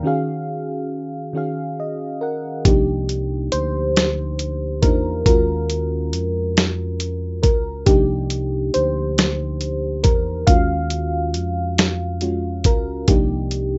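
A mellow FM electric piano, soft and warbling with a vintage character and a noise layer, leads this slow six-eight R&B fragment, its chorus-treated tone sitting prominently in the mix. It opens alone in a brief break, adding a fill from 1.3 seconds before moving into a solo at 2.6 seconds over chords that alternate between Ebm11 and Cm11. The drums and fingered electric bass arrive together at 2.7 seconds. The dusty, gritty sampler-style kit brings a thumpy kick, medium-tuned snare and hi-hat, compressed and placed up front, while the bass sounds dark, round and amped underneath. With its straight feel, the music sets a yearning, late-night mood, and light reverb and a rough home-demo mix with a dulled top end give it a hazy, intimate air.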